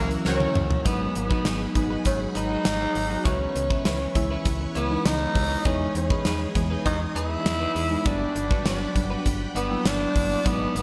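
A straight 4/4 groove at 100 BPM drives this glossy, romantic 1980s-style pop excerpt: a gated drum kit enters at 0.1 s and plays a fill from 0.3 s, then sits up front beside a snappy, metallic FM bass, while a very quiet funky polysynth stab sounds only in the first 0.5 s. A breathy, growling tenor saxophone carries the melody up front with light vibrato, over glassy chorused digital keys, a clean twelve-string electric guitar riff in the background, and a lush vintage string machine holding sustained chords. The bright digital production rests in a moderate hall reverb as the harmony moves from F#7/C# through G#m7, C#m7 and Emaj7 to Gmaj7.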